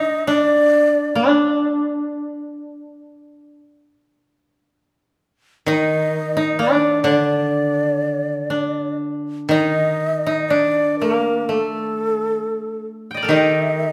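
Austere and calm, this slow, rubato excerpt of Japanese chamber music in D miyako bushi at 64 BPM sets a breathy, mellow bamboo shakuhachi melody with vibrato up front over a woody koto second line plucked with fingerpicks, joined at 5.7 seconds by a bright, low koto accompaniment, all within a moderate recital-hall reverb.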